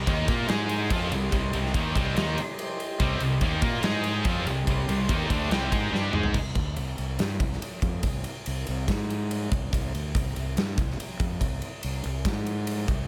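This menacing, aggressive hard rock excerpt puts a big acoustic drum kit, heard in a bright stone room with a tight kick and crash, ride, snare and toms, up front beside a growly, punchy fuzz-overdriven fingered bass. Two scooped, high-gain picked guitars and a double-tracked tight distorted guitar play a riff in the background over a shimmering, retro chorused pulse-width synth pad holding slow-attack chords. After a drum fill ending at 6.4 seconds, the guitars and pad drop out and the bass and drums carry on alone until about 13 seconds.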